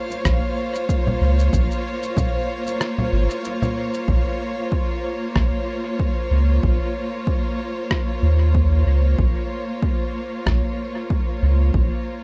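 A deep, round sub bass with tube saturation anchors this hazy, meditative ambient dub fragment alongside a punchy overdriven electronic kick that drops out from 2.8 to 4.1 seconds, muffled pitched-down shaker, rim click and congas trailing dub echo, an intimate bowed string section holding soft sustained chords, and a dreamy reversed granular texture that glimmers in the background until 4.1 seconds, all within a dark, close-sounding mix.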